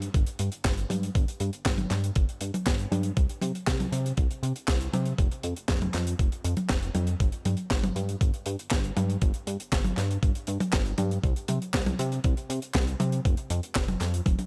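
A thumpy, sampler-style electronic kick drum sits up front in this melodramatic, bittersweet italo disco excerpt at 119 BPM, joined by a dry, tight funk kit with a high-tuned snare, handclaps, hi-hat and toms, and a glossy, chorused pulse-wave synth bass with a plucky filter and mellow sustain running from F1 to C3, all close and upfront before a drum fill at 14.3 seconds.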